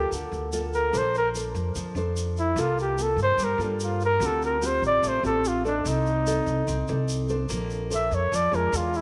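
A close-miked flugelhorn takes the solo up front in this wistful, smooth bossa nova excerpt, its soft-attacked, scooped notes carrying the melody through chords such as Gm9, Bbmaj9 and C7sus4. Beneath it, a dark, thumb-plucked nylon-string guitar plays the accompaniment, while a woody, thumpy upright bass with gut strings sits forward in the mix. A grainy, band-limited tube shaker adds vintage sparkle, and a moderate echo-chamber reverb lends the whole passage a gentle halo.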